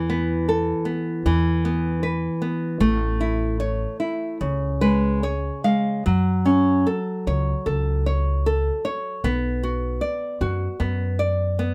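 Fado-style ballad, mournful and passionate, moving at a rubato 76 BPM in 4/4 and settling into F# minor at 6.1 s, cut from a longer piece. A small, fingerpicked nylon-string guitar carries the accompaniment up front, adding a fill from 4.4 s, while a woody, thumpy pizzicato upright bass with dark gut-string tone also sits up front beside it. Moderate studio reverb gives both instruments a modest sense of room.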